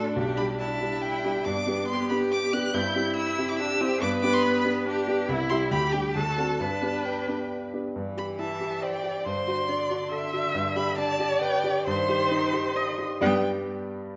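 Cheerful and spirited, this quick classical-period movement for piano quartet in G major moves at 139 BPM in a straight 3/4, cut from a longer piece. A close, up-front violin carries the high melody with vibrato, portamento and a soft attack, while a focused cello sings a second line and a distant viola fills in the accompaniment with expressive, bowed vibrato. A dark, mellow baby grand with short sustain anchors the harmony and rings on alone until 14.2 s, all within a wet recital hall, as the harmony darkens briefly on a C minor chord over G at 11.9 s before settling back on G.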